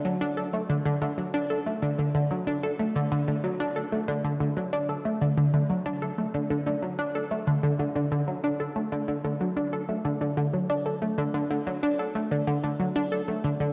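Drenched in a wet plate reverb and an echo-heavy mix, this cosmic, expansive ambient excerpt features a lone up-front analog pluck, nasal, detuned and bright with a fast-attack, decaying filter pluck, colored by chorus, phaser and tape echo as it moves between D3 and A4.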